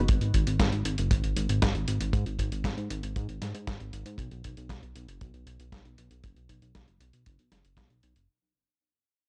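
A chorused synth bass opens this short italo disco excerpt, its glossy, mellow tone blending pulse, sawtooth and sine waveforms with pulse-width modulation, a filter sweep and tube saturation, sitting up front between F#1 and G#2. A dusty soul sampler-style kit joins at 0.1 seconds with hi-hat and a medium-tuned snare, compressed and overdriven, sounding gritty as if re-recorded in a small room. A dry, dark acoustic kick plays beneath from 0.1 to 7.9 seconds, tight and smooth with a rolled-off top. The mood is melodramatic and bittersweet over a straight four-beat pulse, and the whole fragment fades out across its length. Captured with little reverb, the recording has the dry, gritty hardware character of cassette tape.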